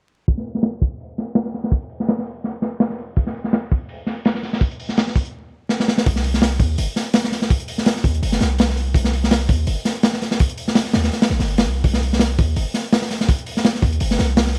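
A crunchy, gritty breakbeat kit of hi-hat, kick and snare drives this frenetic, dark drum and bass and jungle cut, sitting up front with a saturated, mid-forward tone, a tight kick, a medium-tuned snare and a rolled-off top, all run through a filter sweep from 0.3 seconds. A drum fill at 5.7 seconds leads into the drop at 6.1 seconds, where a deep, boomy 808-style sine bass with a noise layer enters, its fast attack decaying beneath the swung sixteenths. The dry mix carries vinyl crackle and a low-pass filter throughout.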